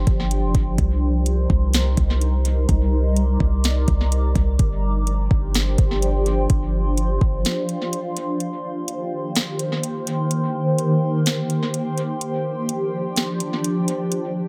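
The mix is close and dry in its room sound yet heavy with echo, in this passage cut from a longer piece. It is atmospheric cloud-rap in C minor at 126 BPM, felt in half-time over 4/4, with a melancholic, hazy mood. A shimmering, ethereal pad holds sustained chords throughout, its slow-attack sine unison tones crowned by an octave-up shimmer and coloured by granular texture, chorus, phaser, built-in reverb and sidechain pumping, evolving with a dark cast. Beneath it, a deep, boomy 808-style bass with a sine body, a noise layer and a fast, decaying attack plays until 7.4 seconds, and a short break follows at 7.5 seconds. The electronic R&B kit, fed through analog delay, combines a knocking kick, a sharp snare and metallic hats, all placed up front. The harmony moves between G7sus4 and Cm7.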